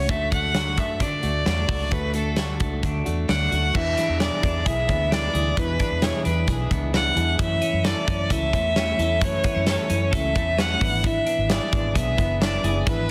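This excerpt of youthful, bright jangly indie pop at 132 BPM opens with a dark, smooth bowed violin singing the melody up front with vibrato, over a fingerpicked, full-bodied jumbo acoustic guitar, twangy compressed twelve-string electric arpeggios and a round, foam-muted vintage bass. A big rock drum kit with a punchy kick, medium-tuned snare, hi-hat and crash sits up front in a big room with a rolled-off top. The harmony moves from D to E7 at 3.7 seconds, then through F#m7 and back to E7, all under light reverb and a dense, heavily limited modern master.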